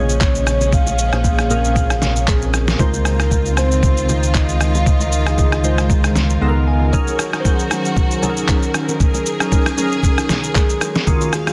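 Deep and late-night in mood, this amapiano excerpt moves at 116 BPM in 4/4 with a 16th-note swing, drifting from Bbm9 to Dbmaj9 and on to Db13 and Gb6. A lo-fi sampler-style drum kit sits up front, pitched down and muffled, with a thumpy kick, a medium-tuned snare, handclaps, rim click and shaker, while very quiet bongos and congas add bright, hard-handed acoustic touches. Glassy digital keys with chorus, tremolo and a filter sweep carry the accompaniment throughout, over a lush, woody bowed string section holding sustained chords. A round sine sub bass anchors the low end until 6.9 seconds, and a soft, dark octave-layered synth lead with chorus, vibrato and digital delay carries the melody, dropping out at 6.4 seconds and returning at 10.6. A short keys fill spills across a brief silent gap just before the bass stops, all set in a dry, dense, heavily limited modern mix.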